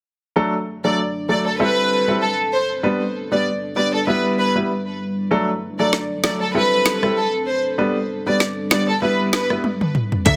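A grand piano with long sustain opens this tough, sultry dancehall excerpt, soon joined by a floating, pure violin section carrying the melody through delay and a dark, moody pad holding sustained chords with chorus and sidechain pumping, before a deep house drum kit with a woody snare and smooth hats enters at 5.9 s and plays a fill from 9.6 s, and a punchy, plucky analog bass and a barely audible impact arrive at 10.3 s in a dense, heavily limited mix.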